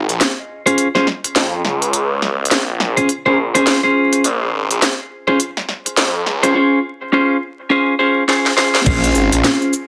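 Swung sixteenths at 104 BPM drive this swaggering, funky glitch hop excerpt in Bb minor, where a thick, swirling phased saw bass and an up-front drum kit with cracking snare, crisp hats, shaker and crash build over a Bbm7 chord, clean picked electric guitar stabs carry gritty sampler texture, sidechain pumping and dub echo, and a knocking electronic kick lands with the drop at 8.9 s after a short drum fill, with vinyl crackle and a dense, heavily limited master on top.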